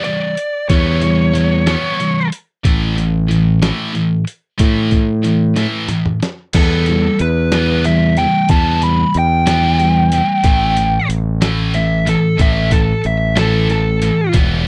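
A slow, straight 6/8 groove from a muffled, pitched-down, sampler-style drum kit with a thumpy kick sets up this moody, cool indie rock passage cut from a longer piece, while a scooped, double-tracked high-gain guitar grinds out a distorted riff throughout and a growling, overdriven fingered bass joins at 0.7 seconds. A biting lead guitar with overdrive and slapback echo sounds briefly at the start, then returns after a drum fill for a solo from 6.6 seconds over chords moving between Em and A5. The sound is dry and close, like a 1970s studio recording, with bass and guitars pushed up front.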